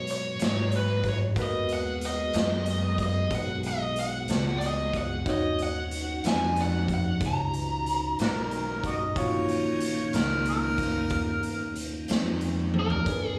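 A biting, overdriven electric lead guitar carries the melody up front in this mournful, soulful slow blues, a 13.4-second excerpt cut from a longer piece in Eb minor at 62 BPM in a straight 12/8. Beneath it, a tonewheel organ holds piping, lightly overdriven chords through a slow rotary speaker with chorus vibrato and audible key click, while a clear baby grand piano with long sustain plays accompaniment in the background. A woody, steel-strung upright bass is plucked pizzicato, and a raw garage drum kit sits up front with a punchy kick, medium-tuned snare, hi-hat and toms in a gritty, saturated, rolled-off sound that pumps in a bright stone room. At 8.2 seconds a clear, close-miked harmonica steps forward as a second line, playing jazz-style with light vibrato, tongue slaps and scooped notes until 11.7 seconds, and a drum fill arrives at 12.7 seconds. The harmony moves from Abm9 to Ebm9, and the whole band is heard as a live gig through the venue's PA, with moderate club reverb and small-room ambience, while slapback echo clings to the guitar, piano and harmonica.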